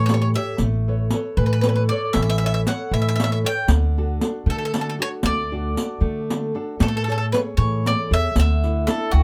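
Italian folk in the manner of a serenade, this short cut from a longer piece moves at 77 BPM in a straight 6/8 with a sunny, romantic mood in D major. A bowl-back mandolin carries the melody with a bright, picked double-string tone set up front, while a nylon-string guitar fingerpicks a classical accompaniment underneath. The upright bass sits prominently with a woody, thumpy pizzicato sound from its gut strings, and a riq adds dark jingles that come across compressed and saturated. The harmony drifts from A7 and Aadd9 to D, then shifts to Amaj7 at 6.8 seconds as a new section begins, closing on Dsus2. In the final moments, at 8.9 seconds, a second mandolin slips in with a warm, round double-string line, all of it framed by light reverb.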